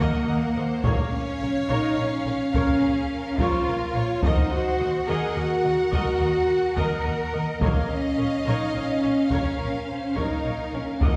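A dark French horn section holds sustained chords at the front of this cinematic, epic orchestral excerpt, its soft-attacked, tight tone carrying a triumphant, adventurous mood in a slow 12/8 at 71 BPM, moving between Ebm and Bbm. Above it a focused, lush symphonic violin section sings the melody with vibrato, joined by a rich chamber violin second line, smooth, even violas, and a bass foundation of rich cellos and woody double basses. From 0.8 seconds a distant taiko ensemble struck with hard sticks drives underneath, the whole heard from further back in a reverberant recital hall.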